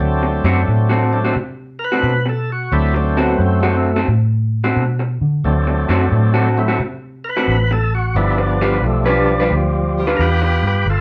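Blues excerpt at 88 BPM with a rollicking, gritty swing in D mixolydian, moving from D7 to G7 at 8.2 seconds, as a lightly broken-up, lo-fi electric guitar riff rides over a thick tonewheel organ with key click, slow rotary speaker and overdrive, a dark, round, foam-muted fingered bass sits up front, and a mellow saxophone section adds soft-attack stabs with light vibrato at 10.0 seconds, all in a live room with moderate reverb.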